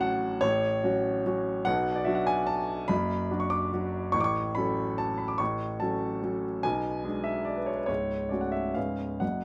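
Wistful and elegant, this short classical piano waltz moves in 3/4 at a tempo of roughly 131-152 BPM, with a rubato feel that lets the pulse breathe. A solo grand piano carries the whole 9.4-second fragment, cut from a longer piece, ranging from C#1 up to D6 in F# minor. Its tone is clear and natural, placed up front in an intimate sound where the action noise of the instrument can be heard. The harmony moves from F#m/A to Bm, returns to F#m/A, then passes through G#dim/B before reaching F#m/C# and closing on C#7. Light reverb gives the recording a gentle sense of space.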